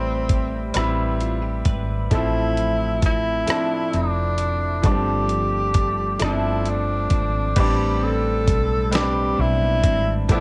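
This slow, sultry R&B excerpt in 6/8 at 44 BPM opens in A minor, with a tenor saxophone carrying the yearning melody alongside a clean electric guitar, a grand piano and a fretless electric bass. The saxophone sits up front, with a light vibrato and a roomy, pop-style tone, while the brilliant piano accompaniment is intimate enough that its action noise can be heard. The bass is dark, round and hollow, colored by analog chorus. The twangy, picked guitar plays a second line in the background through its own chorus. A gritty sampler-style drum kit enters at 0.3 seconds with a thumpy kick, medium-tuned snare, rim click, hi-hat and crash, compressed and close. The harmony moves from Am9 through Dm9/A and G9sus4 before settling on Am11 as a new section begins at 7.6 seconds, and cassette tape lends the guitar, piano and drums a homemade, dusty grain in a dry room with little reverb.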